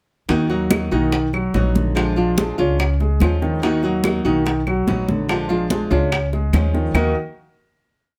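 A lightly reverberant, sultry Cuban son and guajira piece in Eb minor at 144 BPM, built on a short montuno vamp that cycles Ebm, B, Bb7 and Db before settling on a final Ebm chord at 6.9 seconds. Up front, a warm concert grand plays the montuno in octaves with deep bass, a dark, woody pizzicato upright bass lays down a tumbao that anticipates the chords, and a fingerpicked flamenco guitar strums with muted slaps. Beneath them, low-tuned, saturated bongos keep steady eighths with a hand bell, bright thin-skinned congas mix slaps and open strokes in the background, and claves enter at 0.7 seconds with a two-bar time line.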